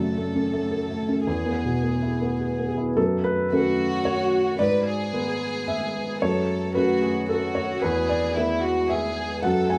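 A rubato 3/4 sway at 111 BPM carries this longing, fragile fragment of neoclassical piano and strings in F# minor, where a felt-muted upright piano, mellow and intimate with audible action noise, sits up front as accompaniment beneath a close chamber violin section singing the melody with soft-attack sul tasto bowing and vibrato, while a very quiet, moody analog pad of detuned, chorused and phased sustained chords lies deep underneath, the whole set in light small-room reverb as the harmony drifts from F#m through E and G#dim.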